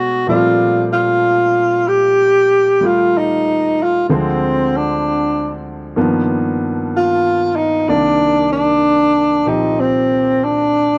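A slow four-beat pulse with a relaxed swing on the eighth notes sets the pace for this smoky, intimate jazz ballad, cut from a longer piece. A breathy tenor saxophone carries the melody in its lower-middle range, with a mellow tone, soft attacks, scooped notes and a light vibrato that give it a confiding, late-night character. Beneath it, a clear, natural-sounding grand piano provides the accompaniment across a broad span of the keyboard, sitting a little lower in the balance than the horn. Both instruments play together for the full 11.0 seconds, moving through rich harmonies from Bbmaj13 to Dm7b5 and G7alt before settling on Cm9. A light reverb adds a gentle sense of space around the performance.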